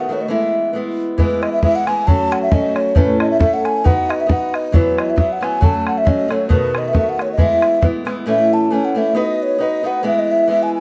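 A hollow wooden flute with an airy, crisp tone carries the melody over a boxy, fingerpicked ladder-braced acoustic guitar in a bright, rollicking Celtic polka in E major at 136 BPM in a swung 2/4, tuned slightly high to A4 = 445 Hz. A damped, tight bodhran sits up front from 1.2 to 8.2 seconds, while slapback echo and plate reverb lend the flute extra lift and the guitar moves through chords such as F#m, A, B7 and Esus2. This short cut from a longer piece shifts into a new section at 8.3 seconds, all set in a moderate studio room.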